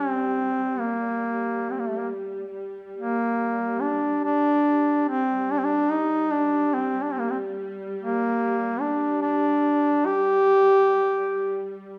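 The duduk carries the melody up front, its warm tone marked by scooped notes in a folk style as it moves between A3 and G4 from the opening until 11.8 seconds. Beneath it, a rich studio string section holds a bowed drone on G3 throughout the 12 seconds, smooth and even with light vibrato and a smooth top, sitting well behind the solo voice. This Caucasian lament is in G minor and 3/4 at 71 BPM, though the feel is rubato. The mood is solemn and full of longing. A moderate recital hall reverb gives the sound a sense of space, and the passage is cut from a longer piece.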